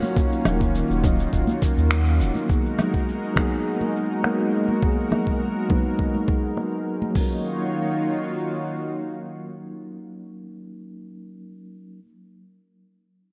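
This sunset chillout fragment, cut from a longer piece, feels wistful and smooth, drifting in a straight 4/4 through a dreamy mix soaked in a lush hall reverb. A mellow tine electric piano carries the accompaniment through built-in speakers, its clean tone roughened by vintage 12-bit sampler grit, softened by a low-pass filter and trailed by a diffuse ambient delay, while a filter sweep moves across it and the drums. Up front sits a thick, full-bodied unison pad of detuned sawtooth and square waves, holding sustained chords with a slow attack, long release and chorus until about 10.2 seconds. A dusty, tape-warm sampler-style drum kit with a thumpy kick and hi-hat sits up front alongside compressed electronic shaker, woodblock and finger snaps under low-pass filtering, plus acoustic congas set back in a small room. A deep, round sine sub bass lands briefly from 0.5 to 2.3 seconds, and once the percussion stops around 7.3 seconds, the electric piano and pad carry on alone.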